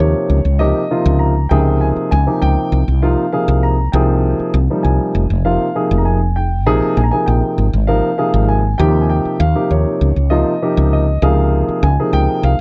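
Nocturnal and funky, this short passage of electric jazz fusion, cut from a longer piece, moves at an easy, straight-feel pace in four. A woody fretless electric bass sits up front in the lowest register, its tone dark, round and hollow-bodied, with a direct, amped character. A grand piano carries the accompaniment across its middle and upper range, sounding polished and present, with long sustain that lets its voicings ring. The harmony drifts through rich extended colours, opening on Eb13 and passing through Dbmaj9, Ab6 and Bb5 before circling back to Eb13 and Dbmaj9 near 11.2 seconds. Both parts play throughout the roughly 12.6 seconds, captured in a dry, close 1970s-style studio sound with little reverb.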